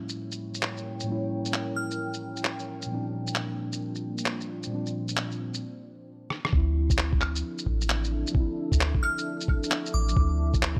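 A glassy, crystalline FM bell glints briefly at 1.8 s and returns at 9.0 s through chorus, phaser and tape echo, high above this rainy, ghostly future garage piece in D minor at 132 BPM, its swung sixteenths carried by muffled, pitched-down shaker, handclaps, rim click and claves. Muted, felt-like synth keys pulse with sidechain pumping from the outset, joined at 0.5 s by a moody, warbling pad with vintage 12-bit sampler grit and built-in reverb that pumps along with them. After a short break, a thumpy, compressed kick and a round, sine-like 808 bass arrive at 6.5 s as the harmony settles onto Dm7.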